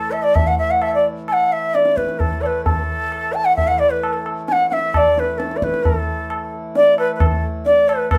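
Radiant and devotional, this short fragment of Hindustani classical music unfolds in raga durga over a seven-beat cycle with a straight feel. A bamboo bansuri carries the melody up front, its bright, reedy tone marked by vibrato, tongued articulation and lifted highs as it moves through a range of about an octave. Beneath it, a hand-pumped harmonium holds a low drone with a warm, breathing quality, sitting well back in the mix. The tabla enters at 0.1 s, low-tuned and acoustic, with a short ring and a close, live-room presence near the front. The trio plays together in one room, wrapped in a wet studio reverb until the cut at 8.2 s.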